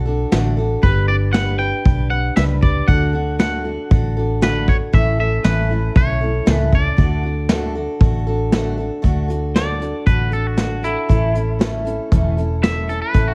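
A twangy, bright electric guitar carries the melody in this sunny, easygoing honky-tonk and classic country excerpt in D major at 117 BPM, over a full-bodied picked steel-string acoustic guitar, a dark, round fingered electric bass sitting up front, and a muffled vintage brush drum kit entering at 0.3 seconds with a punchy kick, all in light reverb, before the clean electric guitar takes a solo from 9.0 seconds.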